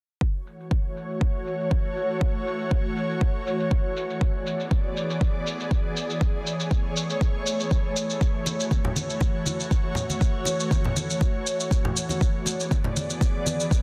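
A deep, tape-warm electronic kick sits up front from 0.2 seconds, anchoring this spiritual afro house excerpt at 120 BPM in F# minor with a light 16th-note swing, while a layered shaker, re-recorded in a small room and low-pass filtered, runs beneath it. An ethereal, airy pad of detuned sawtooth and triangle tones holds slow-attack chords through F#m7, E7 and Amaj7, its ensemble chorus, built-in reverb and sidechain pumping giving it a mellow glow. Bright acoustic congas played with soft hands join at 8.5 seconds, all within a dense, heavily limited modern master with light reverb.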